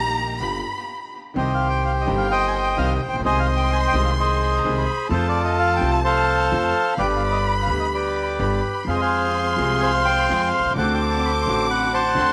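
Lightly reverberant small-room sound frames this sultry, passionate tango fragment at 128 BPM in rubato 4/4 and C harmonic minor: a close violin section sings an expressive, bowed second line with vibrato and portamento over clear concert grand piano accompaniment and a woody, thumpy pizzicato upright bass; a reedy, dark bandoneon enters up front with the melody at 1.4 seconds, while a background string section adds tape-echoed stabs at the start and again from 8.9 seconds.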